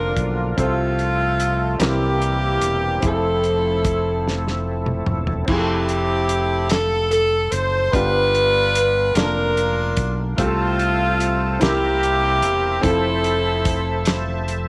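In a slow, straight 6/8 lilt at 49 BPM, this jubilant, hopeful gospel passage in F major is carried by an edgy, close-miked saxophone section playing the melody up front with light vibrato and a loose jazz feel, over clear, open concert grand piano accompaniment with deep bass. A bright, direct fingered electric bass anchors the low end, and a dry, muffled soul drum kit with a fat snare, tight kick and dark cymbals adds a lo-fi character, with a fill at 4.3 seconds. A reedy, lightly overdriven tonewheel organ with key click, chorus vibrato and fast rotary speaker holds sustained chords in the background, dropping out at 5.5 seconds and returning at 10.4, all set in a light, small-room ambience.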